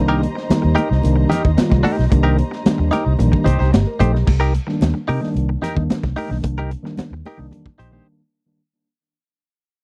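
Cut from a longer funk piece at 111 BPM in C minor, this cool groove opens on a warm string section holding sustained chords over a Cm7 that drops away at 4.2 seconds, while a mellow tine electric piano stabs through tape echo, a round, foam-muted fingered bass sits up front, a twangy, clean direct guitar shimmers with harmonic tremolo, a gritty breakbeat kit with a high-tuned snare and tight kick drives beside very quiet, high-tuned congas, all in a dry, close 1970s-style studio sound that fades out from 4.3 seconds before a brief break at 8.1 seconds.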